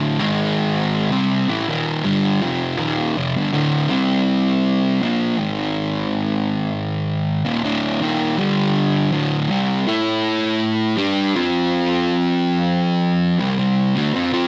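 A straight 4/4 pulse at 81 BPM drives this ominous, hypnotic metal passage, cut from a longer piece. A lone double-tracked electric fuzz guitar carries everything, picked and distorted, compressed and up front, ranging from D2 to A4 and sitting in a moderate, large studio reverb with a digital ambience. After opening on G#5 and D minor, the riff settles at 3.5 seconds into a cycle of power chords, chiefly D5, C5, Bb5, G5 and A5, which runs through to 14.5 seconds.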